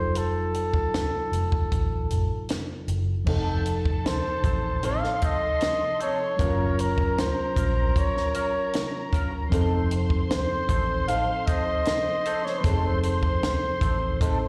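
A straight 4/4 groove at 77 BPM from a compact cocktail drum kit, with its tight kick, high-tuned snare, dark cymbals and hi-hat, sits up front beside a round, punchy, foam-muted electric bass, setting up a lush, silky 1970s-style soul passage with a cinematic air, heard as a live gig through the venue's PA in a recital hall. A close-miked flugelhorn carries the jazz-style melody with scooped notes, plate reverb and slapback echo, over a mellow tine electric piano heard through its built-in speakers, as the harmony moves from F7b9 to F7 and Gbmaj7. At 3.3 seconds a veiled, con sordino string section enters with a soft-attack second line, joined by a dark, clean electric guitar riff with wah and slapback echo, and the passage is cut from a longer piece.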